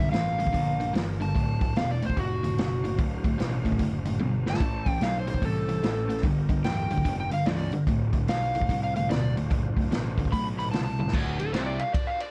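A dark, overdriven slide guitar carries the melody in this raunchy, swaggering cut from a longer blues rock and southern rock piece, moving into a solo at 11.1 seconds. Beneath it, a crunchy, bright electric guitar, double-tracked and picked, plays a low riff, while a growly fuzz bass, direct and amped, holds down the bottom. An acoustic vintage drum kit sits up front with a punchy kick, a medium-tuned snare and a rolled-off top, and it breaks into fills at 4.2 and 10.9 seconds. In the background, a full, gritty tonewheel organ holds sustained chords with percussive second-harmonic attack, chorus vibrato and a fast rotary speaker, over a progression of G7#9, D7#9 and A7#9. Swung eighth notes give the groove a loose strut, and a modest small-room reverb with cassette tape character lends the whole cut a vintage feel.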